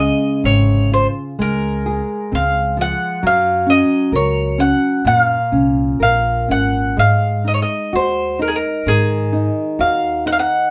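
A round, double-strung mandolin carries the melody up front, its picked lines full of longing and passion in this fado-style ballad, which moves in a rubato 2/4 at around 62-67 BPM through Dbmaj7 and Gbmaj7 harmony before landing on Ab5. A small, fingerpicked nylon-string guitar sits up front alongside it as warm accompaniment, while a dark, woody pizzicato upright bass underpins the pair until 10.4 s. The trio plays live together in a wet studio room, in this short excerpt cut from a longer piece.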